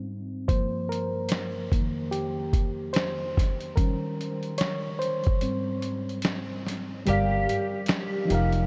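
Nostalgic and reflective, this lo-fi hip hop excerpt opens on a reedy, up-front electric piano with cassette-tape coloring, joined at 0.5 seconds by a gritty, compressed sampler-style drum kit with a thumpy kick, before a woody, growly upright bass and a slightly broken-up electric guitar melody with ensemble chorus arrive at 7.1 seconds as the kick drops out, very quiet, dry finger snaps flicker briefly near the close, and the dreamy mix is soaked in a huge ambient reverb.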